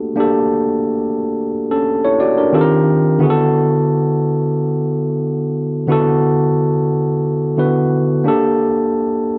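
Soul in a lush, romantic mood, this short cut from a longer piece features an overdriven tine electric piano playing alone from 0.0 to 9.4 seconds, moving through Gmadd9, Eb6 and D6 before returning to Gmadd9. The piano sits up front with a bright, barky, gritty bite through a combo amp, and a gentle 16th-note swing gives the 4/4 pulse a relaxed lilt. A moderate stone room reverb wraps the sound, conveying the feel of a band playing live in one room.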